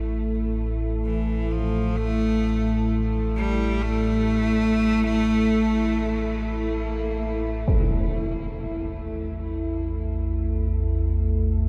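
This ominous dark ambient drone in free time opens on an A5 chord: a deep, rumbling, detuned drone with ring modulation, lush chorus and built-in reverb, a moody, full-bodied analog pad holding sustained chords with chorus, and a very quiet quartz singing bowl ringing out soft arpeggios. A biting, intense cello, played by one bowed player with light vibrato and tape echo, carries the melody from 1.0 to 6.7 seconds before a huge, low-pass filtered impact strikes at 7.7 seconds. A cavernous reverb with a 7.4-second tail wraps this unsettling passage.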